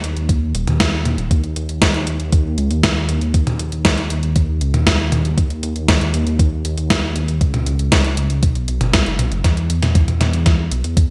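Synthwave at 118 BPM in a straight 4/4, nostalgic and driving, this excerpt pairs a dark, detuned sawtooth bass, deep and rumbling with a beating, saturated edge, against an up-front 80s digital drum machine whose hi-hat, snare and toms carry gated reverb, the snare especially. A thumpy, tape-warm electronic kick joins at 0.3 seconds, and at 9.4 seconds the drums break into a fill. The production is bright and 1980s-style with light reverb, the drums sounding re-recorded in a large room.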